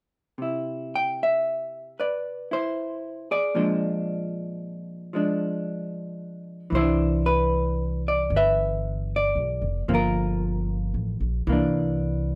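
Light reverb lends this short jazz ballad, cut from a longer piece, a gentle sense of space, with both instruments sitting up front. The mood is romantic and tender, moving in an unhurried swing. A vintage hollow-body electric guitar opens alone at 0.4 seconds, its clean, picked tone dark as it plays accompanying chords from Cmaj7 to Bb7. At 6.7 seconds a plucked upright bass with steel strings joins, woody and low, as the harmony moves through Cmaj9 and Gm9. The passage settles on a C9 chord.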